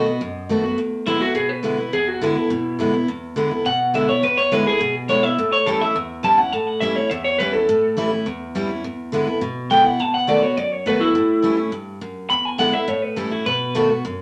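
Rock excerpt at a brisk 208 BPM in E mixolydian, with a rollicking, retro mood as it moves through dominant seventh chords from E7 to A7 and B7. An electric guitar through a small old amp carries the melody, sounding twangy and slightly broken-up, with a clean solo running from 0.8 to 14.2 seconds. Beneath it, a picked steel-string acoustic guitar with fresh strings gives full-bodied accompaniment, both guitars up front in a wet studio reverb.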